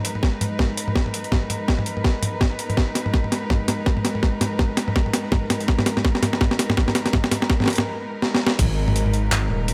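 Spacious and tense, this half-time drum and bass piece at 165 BPM in G# minor builds for 8.6 seconds over a rich, bowed cello section holding a G#madd9 chord with sidechain pumping, while a gritty, overdriven sampler-style kit with a high-tuned snare, handclaps, hi-hat, toms and crash plays fills around a brief break atop a tight, up-front electronic kick, until a deep, rumbling detuned saw bass arrives for the drop at 8.6 seconds, all set in light reverb.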